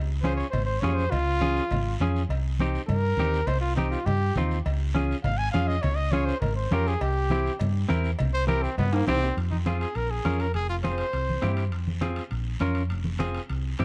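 Cumbia in F minor at 204 BPM, this driving, fiery excerpt opens with a round, punchy hollow-body bass up front and a close-miked trumpet soloing with vibrato until 9.4 seconds, over a bright, clean picked semi-hollow guitar, damped congas in the background, a raspy guiro and ringing cowbell and timbales, all in light reverb, before a drum fill leads at 9.4 seconds into a new section that cycles through Fm, Bbm and C, with the trumpet stopping at 11.5 seconds.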